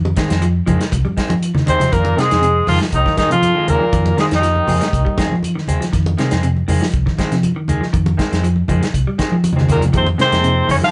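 A band playing live in one room, with a moderate studio reverb and a soft, dulled top end, gives this intense, driving afrobeat cut from a longer piece a close, vintage feel. A soul drum kit with a tight kick, medium-tuned snare and hi-hat anchors the groove alongside thick-skinned congas, while a round, dark fingered electric bass sits beneath them. Two picked electric guitars fill the middle: a clean one playing arpeggios in the background and a slightly broken-up one adding stabs over a steady Fm7. At 1.7 seconds a bright, punchy alto saxophone takes the melody up front with light vibrato, backed by a brilliant, forceful trombone and a clear trombone section on second lines in the background, and the horns return at 9.7 seconds. A mellow, reedy electric piano with fast tremolo slips in at 9.9 seconds, just as the piece is cut off, and drum fills mark both horn entries.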